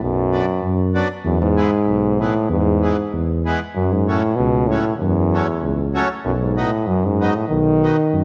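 A clear euphonium opens the recording at 0.0 seconds, carrying the melody up front with a light vibrato and a classical style, while a mellow tuba holds down the bass beneath it, also with a light vibrato and a classical touch. At 0.3 seconds a reedy, full accordion enters in a supporting role, filling in the accompaniment at a lower level behind the two brass voices. This jolly, bouncy alpine folk dance tune moves at 96 BPM in 2/4, though the rubato feel lets the pulse stretch and breathe. The harmony travels from B minor through E and F-sharp minor before settling on B major. A moderate concert hall reverb lends the sound a sense of space, and the production leans dark and warm. This short passage of about 8.2 seconds is cut from a longer piece.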